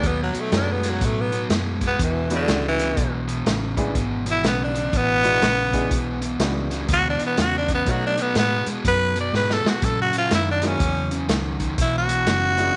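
A raspy, growling tenor saxophone solo opens this laid-back, rollicking electric blues shuffle at 123 BPM, sitting up front with a gritty jazz edge as the full band plays beneath it from the start. A bright, crunchy overdriven guitar picks out a low riff, while a dark, round, foam-muted electric bass anchors the bottom with a vintage, amped tone. A woody, polished upright piano adds accompaniment in the background, and a muffled, lo-fi drum kit with a punchy kick, medium-tuned snare and hi-hat swings the 4/4 groove from a small room. The harmony moves through B7, E7 and F#7, and the drums play a short fill at 9.3 seconds before the change to F#7. Light reverb and softened highs give the whole recording an old-fashioned feel, and this short excerpt is cut from a longer piece.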